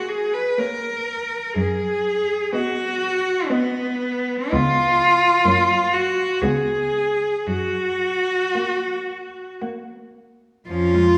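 Serene and lyrical, this short fragment of a classical piece for cello ensemble unfolds in a gentle, rubato triple metre. A rich, focused cello, heard close, carries the melody, while a clear, smooth cello sits up front with an even second line beneath it. Further back, a warm cello plays the accompaniment with expressive portamento, and from 1.6 s a distant, full-toned cello adds a steady bass line. All four instruments are bowed by single players with vibrato, and the harmony moves unhurriedly through a handful of chords before returning home. A generous recital-hall reverb gives the ensemble a spacious, church-like glow.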